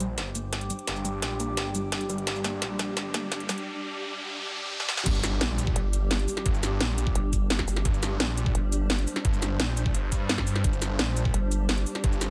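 Lightly reverberant and mechanical, this dark technical drum and bass excerpt opens with a build-up in which a lo-fi, dusty pluck arpeggio under a filter sweep and a nostalgic tape-like pad sit in the background over a swarming, granular drone, a growling distorted saw bass and an up-front kit of cracking snare and metallic hats, while a riser and noise sweep lead into the drop at 5.1 s, where an impact hits and a knocking electronic kick enters, with a nasal vowel-sweep wobble bass joining shortly after.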